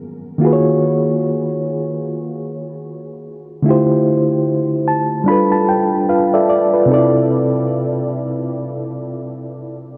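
A relaxed 74 BPM groove in 4/4 with a 60% swing on the sixteenths gives this hip hop clip its lazy sway. A reed electric piano carries the whole piece alone, its reedy, clean tone placed direct and up front and shimmering with a fast tremolo, while a cassette-tape character and a low-pass filter soften its edges. The harmony drifts through Ebm11, Dm11, G9 and C6, lending a hazy, nostalgic colour, and the piano slips into a fill from 4.5 to 6.9 seconds. A huge ambient reverb with an 8.8-second tail soaks the mix in a dreamy wash. Tuned slightly low at A4 = 438 Hz, this is a short slice cut from a longer piece.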